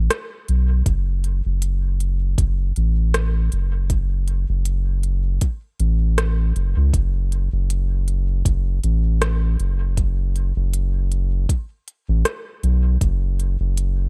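A soft, round dub sub bass opens this short cut from a longer ambient dub piece, sitting up front with a deep, sustained tone that blends triangle and square-wave character and speaks with a fast attack. Almost at once an organic electronic drum kit joins with crisp hi-hats and a rim click, its tape-warm sound carrying the feel of having been re-recorded in a small room. An electronic kick drum arrives at 0.9 seconds, a soft, produced thump placed up front that shares that same small-room, tape-treated character. The groove moves in an unhurried 4/4 with a light swing on the sixteenths, giving the hazy, deep mood a gentle sway. Dry, close production keeps the bass and kick prominent, with the kit sitting a little further back until the bass ends at 14.1 seconds.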